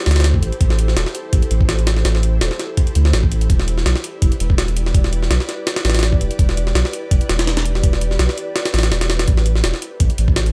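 A pitched-up, sampler-style jungle drum kit sits up front in this dark, nostalgic drum and bass cut, its thumpy kick and high-tuned snare carrying a compressed, gritty, tape-warm character beneath a touch of studio reverb alongside the hi-hat. A soft dub sub bass enters together with the drums at 0.1 s, deep and round with a fast attack and sustained notes, also placed up front in the low register. Floating quietly behind them from the very start, an ethereal pad holds sustained chords, its detuned unison layers, sub octave, slow attack and long release softened further by ensemble chorus, built-in reverb and a vintage 12-bit sampler grit. The harmony moves from Am7 to Em7 at 3.5 s and returns to Am7 at 9.3 s, the whole passage riding a lightly swung sixteenth-note feel. The overall sound is dry and close, an excerpt lifted from a longer piece that stays at full drop intensity throughout.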